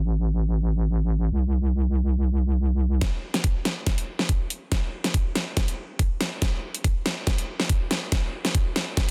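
A half-time groove at 141 BPM in 4/4, with a light 16th-note swing, drives this chaotic, menacing stretch of heavy wobble dubstep, cut from a longer piece. It opens on the wobble bass alone, a heavy, saturated blend of square wave and sine tones sitting between A1 and C2, compressed and sustained with a fast attack, its overdrive and chorus giving it a mellow yet thick presence up front while a filter sweep runs through the first 3.0 seconds. At 3.0 seconds the bass stops and the drums take over, pairing a layered, knocking electronic kick with a produced kit of huge snare and bright, high-passed hats, both carrying a tape-warm character. From there to the end at 9.1 seconds, a build-up and drum fill push the energy forward. The whole sits in a digital ambience with a dense, heavily limited modern master and a low-pass filter.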